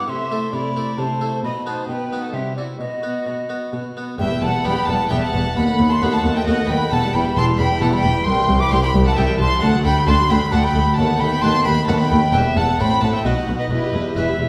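Stormy and driving, this baroque-style concerto movement in 3/4 sets an airy, crisp wooden flute on top of a gut-string chamber ensemble, with a reedy violin section also carrying the melody, a smooth-topped second violin line, a dark viola section and a nasal cello section in the background, a plucked Flemish-style harpsichord filling in the harmony, and a double bass section entering at 4.2 seconds, all heard from further back in a wet recital hall.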